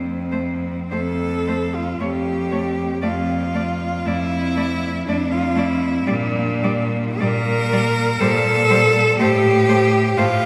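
A single bowed cello carries the melody up front, its rich, smooth tone shaded with vibrato and heard close, in this serene and tender classical passage for cello ensemble, cut from a longer piece. The music moves in a rubato 3/4 at roughly 49-62 BPM in F major, with the harmony resting on F before shifting to Gm/Bb at 6.1 seconds and settling on F/A at 9.2 seconds. Also up front, a bright, intense cello holds the bass with light vibrato. Behind them, a second rich cello sings an even inner line, while a clear, focused cello plays the accompaniment with vibrato in the background. The whole ensemble sits in a wet church reverb with a long, lingering tail that lends the lyrical phrasing a spacious glow.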